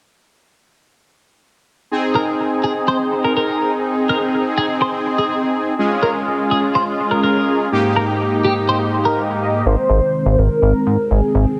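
A wet, echo-heavy mix with a digital chamber ambience frames this upbeat, wistful pop fragment in Ab major, moving at 124 BPM in a straight 4/4. From 1.9 s, bold, fat analog synth brass carries the accompaniment up front, its detuned sawtooth tone evolving through a filter sweep, with vibrato, chorus and dub echo. A bright, clean, compressed twelve-string electric guitar picks a second line above it, colored by phaser and dub echo, while the harmony moves from Ab to Db over Ab and Eb over Ab. A velvety synth lead takes the melody from 9.4 s, a smooth, detuned unison sound with vibrato, chorus and dub echo. At 9.7 s the second section returns to Ab as a glossy, nasal, chorused pulse-wave synth bass enters as the most prominent part, and a dark, vintage string machine voiced as cellos adds slow-attack sustained chords through phaser and ensemble chorus.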